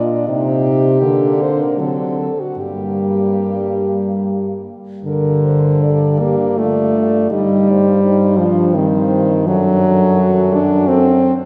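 An up-front French horn carries the accompaniment in a mellow, smooth-topped voice, anchoring this elegiac, solemn classical fragment for horn quartet above a bass horn that is warm, distant and roomy, with light vibrato. A clear, present horn sings the lyrical melody while a gentler horn holds the second line in the background, the four playing together from 0.0 to 11.3 seconds in an unhurried, rubato triple metre. The quartet is heard from further back in a wet cathedral reverb with a long tail and a darkened top end.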